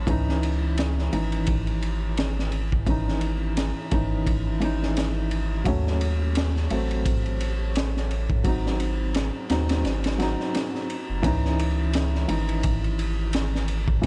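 A round analog bass sits up front through the whole 14.1 seconds, its deep, sustained sine-like tone giving this melancholic, brooding trip hop excerpt its weight, moving between F#1 and D#2. A crunchy breakbeat kit comes in at 0.1 seconds with a punchy kick, a high-tuned snare and ride cymbal, its saturated, gritty sound kept smooth by a rolled-off top. Behind them, a felt-muted upright piano plays soft, mellow accompaniment between E3 and D#4, intimate enough that the action noise is audible, colored by tremolo, tape echo and the grit of a vintage 12-bit sampler. The tempo is 86 BPM in 4/4 with a lazy 16th-note swing, set in C# harmonic minor, and the chords move from C#madd9 through D#m7b5 and G#7 before returning to C#madd9 as a new section begins at 11.2 seconds. The production is dark and dry, with little reverb, keeping every part close and warm.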